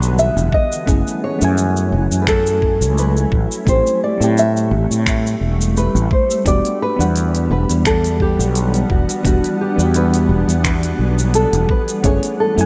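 Wistful and gently swung, this sunset chillout excerpt sets a dark, thumb-plucked nylon-string guitar melody with audible finger squeaks and tape echo over a soft, warbling FM electric piano treated with chorus and digital delay. A shimmering, ethereal pad with an octave-up sheen, a slow attack and evolving granular texture holds the chords of Em9, F#m9 and Am7. A growly, up-front fretless electric bass anchors the low end beside a deep house kit of cabasa, finger snaps and smooth hi-hats, and an electronic kick with a tape-tinged knock that enters at 0.5 s, all set in a light reverb.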